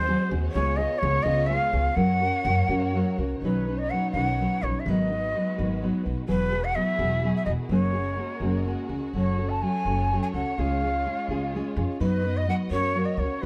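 Mexican folk in a mariachi vein, this romantic yet festive excerpt sways in a rubato 6/8 at 84 BPM, beginning in F# major and shifting to B major at 3.4 s. A breathy bamboo shakuhachi carries the melody with vibrato and a soft attack, bathed in plate reverb, over a full-bodied, thumb-plucked nylon-string guitar whose finger squeaks are audible and a woody, thumpy pizzicato upright bass. Further back, a dark studio violin section holds smooth, bowed sustained chords, all set in a lightly reverberant production with a dark, warm tone.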